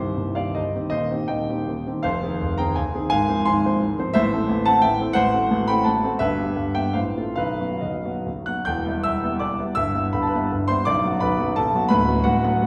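A polished concert grand, deep in the bass yet present, rings through a reverberant recital hall heard from some distance back. This solo piano fragment, cut from a longer romantic classical piece, is a triple-time dance with dotted rhythms and a free, rubato pulse, wistful and capricious in mood. Its harmony wanders restlessly through its first 8.7 seconds before a new passage begins and carries on to 12.7 seconds.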